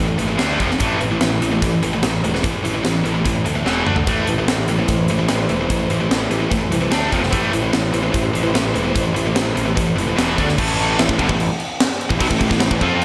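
A heavy high-gain guitar opens this epic, heavy metal passage in A minor at 147 BPM, its bright, double-tracked riff distorted and up front with a slapback echo, while a growly fuzz bass with overdrive holds down the low end from the start. The tight metal drum kit enters at 0.2 seconds, with a high-tuned snare, bright cymbals, a tight kick and toms, and a drum fill at 3.7 seconds leads into the next stretch. At 4.1 seconds a very quiet studio string section adds sustained, bowed chords with vibrato, close and focused beneath the riff until 10.6 seconds. The harmony moves through power chords on D, F, A and E around an A minor chord, and at 10.6 seconds a new section begins on A as the strings drop away. A lush hall reverb gives the whole a big arena sound, and the passage is cut from a longer piece.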